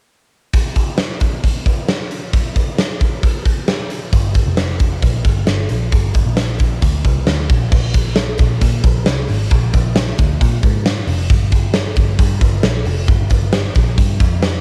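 Jangly indie pop with a breezy, youthful mood, moving at 134 BPM in a straight 4/4 in Bb mixolydian, cut from a longer piece and carrying the light reverb and character of a home cassette recording. A big acoustic rock drum kit sits up front from 0.5 seconds, its punchy kick, medium-tuned snare, hi-hat and bright crash cymbals ringing in a stone room that pumps, with a cassette tape color on the kit. At 4.1 seconds a vintage muted picked electric bass joins, dark, round and amped with a foam-muted thump, and the pair carry on into a second section that begins at 7.7 seconds.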